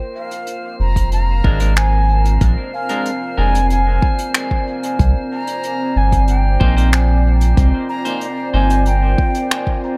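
A round, dark analog bass sits up front in this hazy, meditative stretch of ambient dub, its deep sine-like tone entering at 0.8 seconds with a fast attack and long sustained notes. Above it, a moody detuned sawtooth pad with a sub octave holds chords that move from Bb7 to Cm7, its slow attack softened by chorus and built-in reverb, while a calm glass-harmonics texture drifts with glassy overtones. A distant, airy concert flute carries the melody in a straight, mellow tone, trailing dub echo behind its soft attacks. The rhythm pairs a deep, layered electronic kick with a brushed jazz kit of finger snaps and hi-hat in a studio room, and a bright, clean semi-hollow guitar adds picked stabs in the background from 1.4 seconds, colored by a low-pass filter sweep and dub echo. Light studio reverb frames the whole straight 4/4 groove, and the passage is cut from a longer piece.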